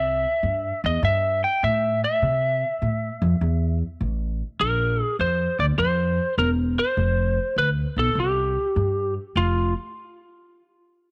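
A twangy, slightly broken-up electric lead guitar carries the melody up front in this swaggering, rollicking electric blues shuffle, with a woody pizzicato upright bass beneath it, both ringing in a small room with light reverb until they stop at 9.7 seconds.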